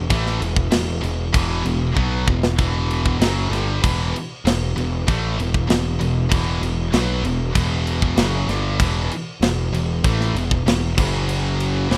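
Heavy metal at 96 BPM in a straight 4/4, this dark, aggressive passage in E minor is cut from a longer piece. A double-tracked, high-gain electric guitar drives the riff with bright, distorted picking between E2 and B3, sitting up front in the mix. Beneath it, a picked electric bass with fuzz and overdrive digs into the low register from E1 to B1, its tone punchy and direct. A tight metal drum kit joins at 0.1 seconds with kick, snare and crash, its medium-tuned snare and rolled-off top giving it a mid-forward character, and it drops in a fill from 2.0 to 2.6 seconds. The harmony holds on E minor until a shift to F#5 at 11.0 seconds, all within a rough home demo mix touched with studio reverb.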